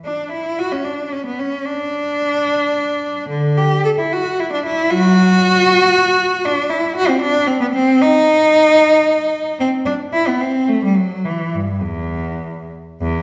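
A single bowed cello, clear and focused with vibrato and placed close and up front, carries this grave, solemn excerpt from a baroque-style classical suite movement in a rubato 3/4, ranging from E2 to A4 and framed by a wet recital-hall reverb heard from further back in the room.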